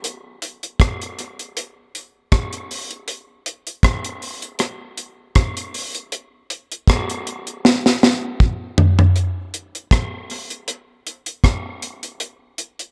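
Bathed in a moderate spring reverb, this meditative, spacious reggae clip cut from a longer piece features a deep, acoustic drum kit played up front at 79 BPM in 4/4 with a light sixteenth-note swing, its dry, tight kick and high-tuned snare joined by hi-hat, rim clicks and toms, with a drum fill from 7.6 to 9.2 seconds leading into a new section that runs to the close at 12.9 seconds.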